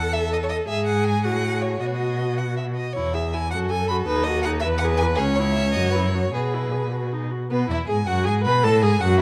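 In a brisk 6/8 at 106 dotted-quarter beats per minute, this cheerful, lively classical-period string quartet movement in E major, cut from a longer piece, sets a warm first violin singing the melody with expressive vibrato and portamento over a rich, smooth second violin line, a steady viola accompaniment and an up-front cello bass with soft attacks and portamento, the four bowed players sounding together across the whole 9.2 seconds in a moderate scoring-stage reverb as the harmony passes through suspended, added-ninth and diminished chords.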